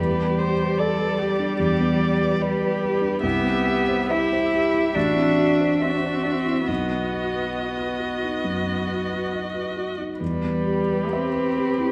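A violin, cello, viola and baby grand piano begin together in this yearning, elegiac slow movement for piano quartet, a fragment cut from a longer classical work in 4/4, taken at a rubato 64-74 BPM and tuned to A4 = 441 Hz. The single violin carries the melody with a rich, smooth tone and vibrato, its upper notes kept sleek and even. Beneath it, the cello sings a second line, its bowed sound warm and steady with vibrato. The viola fills in the accompaniment with expressive portamento, while the dark, mellow piano sits up front with an intimate, natural character, short sustain and audible action noise. The harmony moves from G/E through Cmaj7, F#m7b5/A and B before settling on Em at 10.2 s, all wrapped in a wet scoring-stage reverb with a 1.5-second decay.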